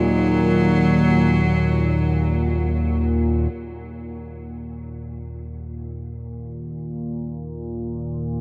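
A huge, wet reverb with a long 8.7-second tail soaks this dark ambient drone fragment, cut from a longer piece, giving it a desolate, unsettling air. An analog synth drone sits up front throughout, its sawtooth and pulse-wave tones shifting through pulse-width modulation and thickened by chorus, so the sound feels mellow, nasal and slowly evolving, with a slow attack and long release. A single bowed cello also plays up front, carrying a brief melody that ends at 3.0 seconds. Its tone is bright and biting, with an airy, earthy bow, light vibrato and a touch of delay. Once the cello drops away, the drone carries on alone and fades in from 3.5 seconds until the fragment ends at 8.4 seconds.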